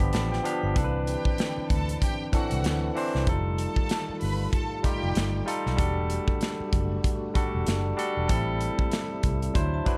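Lush 1970s-style soul at 96 BPM with a swung sixteenth feel, moving through G7, Cmaj9, F9, Em11 and Am7, as a barky, up-front tine electric piano opens with a short fill and carries the accompaniment over a dark, foam-muted fingered bass and a tight acoustic drum kit of kick, snare and hi-hat in a small room. A very quiet, silky string machine with phaser and ensemble chorus holds sustained chords underneath, while a clear, bowed studio string section adds a vibrato-rich second line from 1.1 to 5.4 seconds. A faint, ringing vibraphone with slow motor vibrato touches in briefly at the start and again at 9.7 seconds in this fragment cut from a longer piece.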